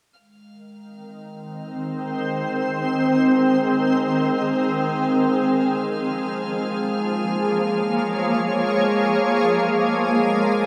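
A soft violin section fades in at 0.2 seconds, its bowed sul tasto tone carrying light vibrato high in the background, and an analog drone settles on a low Ab just after. This is a serene, peaceful ambient piece in free time and Ab major, cut from a longer work. At 1.6 seconds a shimmering pad enters up front with sustained chords, its detuned, granular sound bright with an octave-up shimmer and its own chorus and reverb. Beneath it the drone evolves, a sawtooth and pulse-wave tone with chorus that stays in the background. The harmony rests on Ab before moving to Bbm7 at 5.5 seconds. Everything sits in a vast, echoing cathedral space whose long reverb lets each sound linger.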